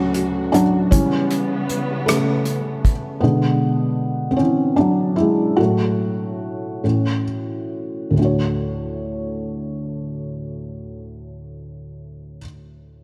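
The recording sits in a moderate echo-chamber reverb, lending a heartfelt, swaying six-eight pop ballad, cut from a longer piece, a gentle sense of space. A felt-muted upright piano sits up front throughout, its tone soft, dark and mellow, with thick felt and audible action noise. Distant, lush strings hold bowed chords with vibrato and a soft attack, while an acoustic drum kit played with bundle sticks adds hi-hat, a tight kick and rim clicks. The drums stop at 3.0 seconds and the strings at 3.2, leaving the piano alone and slowing down until a new section begins at 8.2 seconds. The harmony moves from Dmaj7 through A7/C#, E7/B and F#m/A before returning to Dmaj7.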